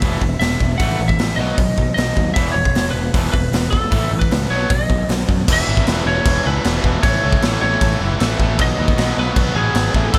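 Energetic and rebellious, this punk rock clip drives along at 154 BPM in a straight 4/4, moving between E5, A and B chords with a shift into a second section at 5.5 seconds. A raw garage drum kit sits up front, its punchy kick, medium-tuned snare, hi-hat and crash cymbal caught in a bright stone room that pumps, with a saturated, gritty character and a rolled-off top. Beneath it, a picked electric bass sounds growly and direct, holding the low end from E1 to F#2. Two bright, overdriven electric guitars pick out the riff in the background, one of them carrying an overdrive effect. Over the top, a lightly driven lead guitar plays the melody between G#4 and F#5 with a twangy, slightly broken-up, compressed tone and a touch of delay, all captured with little reverb.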